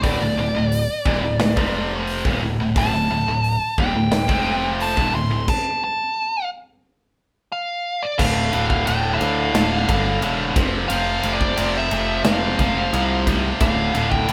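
A nasal lead guitar with a parked wah sits up front in this heavy, driving hard rock excerpt, its dark, overdriven tone carrying a solo through the first 8.2 seconds. Beneath it, a double-tracked, high-gain guitar plays a distorted riff low in its range, moving between D5 and F5 power chords, and a stop breaks the groove from 5.5 seconds. The next section opens on a Dm chord before the riff returns to F5 and D5. A picked electric bass adds a growly, punchy low end, heard direct. A big acoustic rock kit fills out the sound with bright crash and ride cymbals, hi-hat, a medium-tuned snare and kick drum. The band plays live together in one small room, with a moderate reverb giving the performance a close, lively feel.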